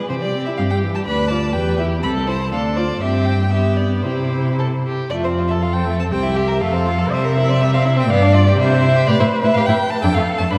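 In a cheerful, graceful classical-period string quartet movement at a quick 122 BPM in 2/4 with a rubato feel, a rich, smooth first violin carries the melody above a clear, focused, more distant second violin and a soft-attacked, expressive viola sliding between notes, while from 0.1 s an up-front cello with vibrato and portamento anchors the bass, all bowed by single players in a wet concert hall reverb as the music moves from C major to F major at 5.1 s in this fragment of a longer piece.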